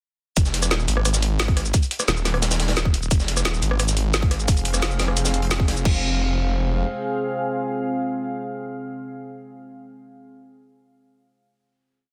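A snarling, detuned sawtooth bass growls up front through distortion and tube saturation with sidechain pumping in this tense, dark technical drum and bass piece in F minor at 175 BPM, driven by a tight electronic kick, a woody-snared kit with metallic hats, cabasa, rim clicks and crash, and a gritty, rolled-off looped breakbeat tucked in the background, while a deep, warbling, chorused pad enters at 3.8 seconds and carries the final chord from 5.9 seconds to the end.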